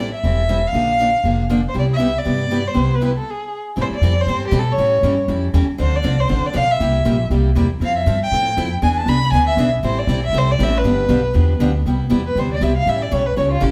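From the first beat, a bowed violin with vibrato and portamento sings the melody over a bright, boxy picked steel-string guitar with finger squeak and a woody, thumpy pizzicato upright bass in this lively, swinging jazz manouche excerpt at 238 BPM, all set back in a wet studio reverb, with a brief stop at 3.3 seconds before the band returns and the expressive violin takes a solo from 11.9 seconds.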